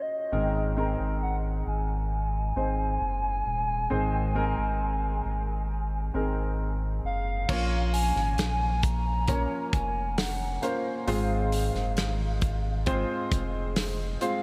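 Set in a straight, slow 4/4 at 67 BPM, this pop ballad in Bb minor, tuned to A4 = 442 Hz, carries a longing, heartbroken mood. A hollow, woody synth lead with a clarinet-like, dark tone and vibrato sings the melody between Eb5 and Bb5, its sound thickened by chorus. A polished grand piano with analog chorus holds the accompaniment up front, while a deep, round sine sub bass enters at 0.3 s beneath an Abadd9 chord. At 7.5 s a modern studio drum kit arrives, with a punchy kick, medium-tuned snare, hi-hat and bright crash cymbals, as the harmony moves to Bbm and later Fm. The whole mix is soaked in a huge, dreamy ambient reverb with a long 6.5-second tail, and this excerpt is cut from a longer piece.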